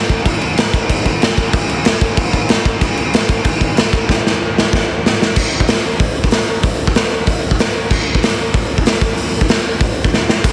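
Aggressive and angry, this straight 4/4 punk excerpt at 188 BPM features only a raw, saturated acoustic garage drum kit, its punchy kick, medium-tuned snare, hi-hat, crash and splash cymbals sitting gritty and up front in a bright, pumping stone room with a rolled-off top, with drum fills at 4.1 and 10.1 seconds and a dry, heavily compressed radio sound.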